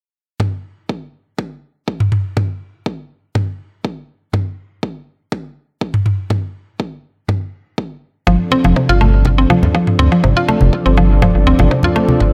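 This afro house fragment opens at 0.4 s on a straight 4/4 pulse at 122 BPM: a deep, produced electronic kick, filtered at the low end, and up-front electronic toms, both touched with studio reverb. The hypnotic groove runs on drums alone until 8.3 s, when the harmony arrives on an F6 chord. A round, mellow analog bass pumps against the kick and sits loudest in the mix. Above it, a woody, bright mallet-like pluck spins arpeggios through chorus and dub echo. A smooth, warbling vintage pad holds sustained chords alongside, with subtle chorus and sidechain pumping of its own. From 8.5 s, low-tuned congas with a thick skin add close, acoustic warmth, and the overall sound stays dry and present.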